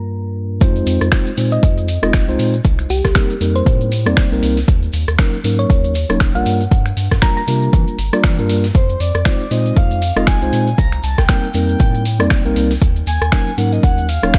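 A dry recording with little reverb sets a late-night, moody deep house groove, cut from a longer piece and built on swung sixteenths and a cycle of minor seventh chords. A mellow tine electric piano plays stabs through vintage sampler grit and a low-pass filter, pumping against the beat alongside a round, dark analog bass thickened by tube saturation. At 0.6 seconds the drums arrive: an overdriven electronic kick sits up front, an analog drum machine adds punchy finger snaps, hi-hat and rim click, and a sampler-style soul kit with a fat, gritty snare and hats hangs in the background with a grainy tube shaker. A tine-like thumb-piano synth pluck, gentle and decaying with chorus and digital delay, carries the melody until 7.4 seconds. From 8.7 seconds a breathy, flute-like synth lead with vibrato and lush chorus takes over the tune.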